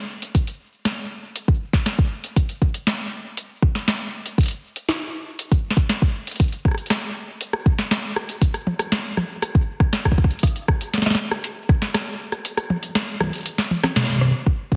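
IDM with an intricate, playful character, built entirely from two up-front electronic drum parts in a straight 4/4. A booming analog drum machine carries hi-hat, rim click, snare and toms, its crisp snare and metallic hats soaked in tape echo and a tape-warm glow. Beneath it, an electronic kick drum supplies a deep, produced thump that was re-recorded in a small room. The whole mix sits in a moderate echo-chamber reverb and a heavily compressed, radio-like sound. Near the close the kick drops out at 12.4 seconds, a drum fill arrives at 13.7 seconds, and a band accent lands at 14.0 seconds before this cut from a longer piece ends.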